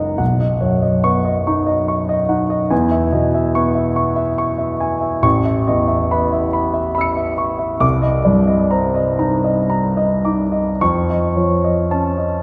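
Drifting in a rubato 3/4 at 52-74 BPM, this hazy, serene impressionist solo piano passage, cut from a longer piece and tuned to A4 = 437 Hz, sets a present, up-front grand piano with long sustain spanning Gb1 to C#7 inside a wet concert hall reverb, wandering through colorful harmonies from Cbadd9 through E6, Aadd9 and Cm9 to a Faug7 at 10.8 seconds.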